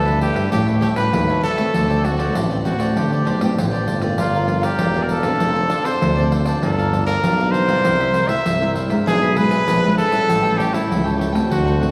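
Joyful and festive, this samba and choro passage, cut from a longer piece, puts a clear, close-miked trumpet up front, singing the melody in a jazz style with light vibrato while a mellow tuba carries the bass line in a classical manner. A bright, crisp picked cavaquinho and a full-bodied, fingerpicked nylon-string guitar, sitting in the background with audible finger squeak, supply the accompaniment over a jingly pandeiro played with soft hands. Around 4.2 seconds the harmony turns from sunny major and suspended chords to a darker run of minor-seventh and dominant chords, all bathed in a long, wet church reverb.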